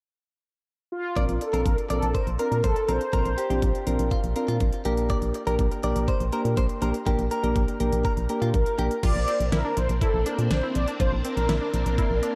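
A mellow, brassy synth lead carries the melody of this driving, melancholic synth-pop excerpt, entering at 0.9 seconds with a dark, detuned sawtooth tone coloured by chorus, tape echo and shimmer reverb. From 1.2 seconds a punchy FM bass, round and decaying, sits up front beside a produced electronic kit of knocking kick, fat snare, crisp hi-hats and crash cymbal. In the same stretch a soft electric-piano-like synth plays gentle accompaniment through chorus and tremolo, while a clean, direct-recorded electric guitar adds a bright, compressed, picked second line bathed in lush chorus and echo. At 9.0 seconds a swirling vintage string machine brings sustained phased chords, and a faint, evolving analog pluck spins arpeggios beneath the returning brass. The mix is echo-heavy and set in moderate spring reverb, and the passage is cut from a longer piece.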